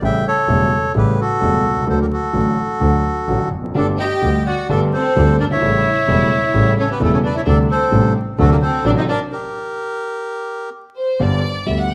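A reedy, up-front bandoneon carries the melody in this passionate, dramatic tango excerpt, moving at 129 BPM in 4/4 with a rubato feel and tuned slightly low to A4 = 437 Hz. Beneath it, a smooth, vintage grand piano supplies the accompaniment while a focused, close double bass, bowed by a single player with vibrato, holds the low end. At 3.8 seconds a bowed violin section enters with a second line, its biting, intense tone softened by a smooth top and light vibrato. The harmony moves through A7, D, Gsus2 and A7 again before a D7sus4 resolving to D7, and the band stops at 9.3 seconds before landing on G at 11.2 seconds. Vinyl crackle and a wet, large studio reverb wrap the sound, giving the short passage an old-record atmosphere as it breaks off from a longer piece.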